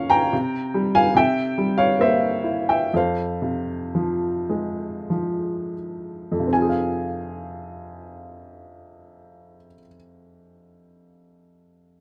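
A woody, vintage-sounding upright piano sits up front in a light reverb, its smooth, short-sustained notes giving this brief fragment of a longer classical piece a melancholic and dark character. Played alone in F minor and 3/4 with a free rubato feel, the lyrical solo drifts between 39 and 74 BPM, slowing from 0.3 to 6.5 seconds as a C7sus4 resolves through C7 to Fm. A new section then begins at 6.5 seconds, and the piano rings on until the fragment ends at 12.0 seconds.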